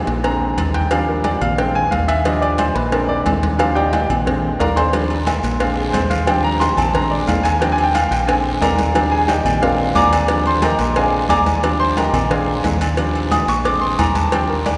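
A clear baby grand piano with long sustain leads up front in this festive, sunny salsa excerpt at 179 BPM in Eb major, soloing over a steady alternation of Bb7 and Ebmaj7, with a dark, round fingered electric bass also up front. Ringing congas, a tight high-tuned cowbell and metal-shelled agogo bells and timbales drive the percussion, with a drum fill from 3.6 to 4.9 seconds, and a raspy guiro joins at 4.9 seconds. The whole mix sits in a cavernous cathedral reverb that gives it the sound of a church or concert hall.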